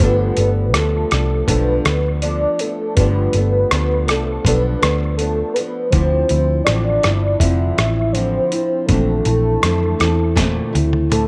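From the first beat, a gritty, compressed sampler-style soul drum kit with a thumpy kick and a dark, round, foam-muted picked electric bass sit up front beneath a fingerpicked flamenco guitar with lush chorus and warbly pitch drift, a reedy electric piano colored by cassette tape in the background, and a soft octave-layered synth lead, full and sustained with a sub octave, carrying the melody through tremolo, analog chorus and tape echo, all in light reverb, in a mellow, wistful 81 BPM indie and bedroom pop excerpt that moves from G9 to Dm9 to Bbmaj9#11 before a drum fill at 10.4 seconds.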